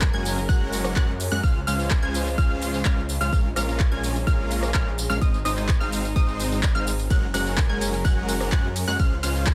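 A punchy electronic kick sits up front in a straight 4/4 at 127 BPM, alongside a layered big-room dance kit of crisp hi-hats, handclaps, ride cymbal, rim clicks and tambourine, with a tape-warm sheen from being re-recorded in a large room. This festival progressive house cut in Db major, tuned to A4 = 436 Hz, runs 9.5 seconds from a longer piece and feels triumphant and euphoric. A huge, dense, compressed supersaw carries the riff with vibrato, a sub octave and delay, while a lush detuned unison pluck spins high arpeggios with a moving notch filter and its own delay. Underneath, a thick detuned saw bass with chorus holds the low end, and an intimate chamber string section plays soft, bowed sul tasto chords in the background, all four of these melodic parts pumping with sidechain. The harmony moves through Gbadd9, Dbmaj7, Bbm7 and Ab before returning to Gbadd9 and Dbmaj7, all set in a digital ambience.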